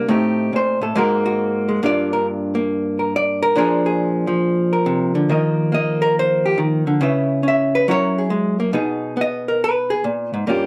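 A vintage hollow-body electric jazz guitar opens this short solo excerpt, its picked tone dark, clean and compressed, sitting up front and heard through close, detailed microphones. The mood is warm and relaxed, moving at 139 BPM in 4/4 with a swung eighth-note feel. Playing alone throughout, the guitar spans from G2 up to Fb5 and moves through chords such as Am7b5, Absus2, Gm7 and Bb7. A repeat of the opening section begins at 5.3 seconds, bringing in Ebsus2, Dbm7, Gb9 and a closing B6. Light reverb adds a touch of space around the hollow-bodied sound.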